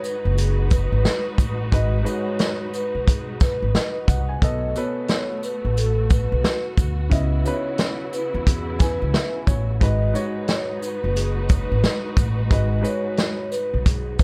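A punchy vintage drum kit with a rolled-off top opens this tough, reflective boom-bap hip-hop excerpt at 89 BPM with swung 16ths, joined from the start by a mellow soft-mallet vibraphone melody with tape echo and slow motor vibrato, a smooth grand piano with cassette-tape colour, bowed studio strings holding chords with vibrato and portamento, and faint jingly sleigh bells, while a woody, thumpy pizzicato upright bass enters up front at 0.3 seconds, all in a dry mix over G#m7, B7 and C#m9 chords.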